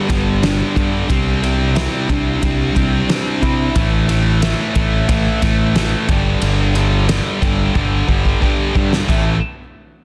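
A growling, overdriven fingered electric bass sits up front in this restless, bittersweet slice of quiet-loud alternative rock, cut from a longer piece. A bright, full-bodied steel-string acoustic guitar opens with fingerpicked arpeggios over Gadd9 and Cadd9 chords, but it drops out at 3.8 seconds as the harmony shifts to heavier A5 and G5 power chords. Two distorted electric guitars carry a riff throughout, one bright and picked, the other scooped and high-gain. A loose indie drum kit with a fat snare, punchy kick and dark crash and ride cymbals pumps in a studio room, closing with a fill from 7.7 to 9.1 seconds. Light studio reverb and a dense, heavily limited modern master give the whole a compact, forceful sound.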